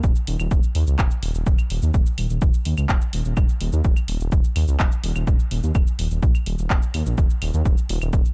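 A punchy, tape-warm electronic kick sits up front through this dark, driving melodic techno passage alongside a deep, rumbling detuned saw bass that pumps with saturated, beating unison tones, while an analog drum machine adds claves, handclaps, hi-hat and shaker lower in the mix, all set in a digital ambience with a dim, mellow production across the full 8.3 seconds cut from a longer piece.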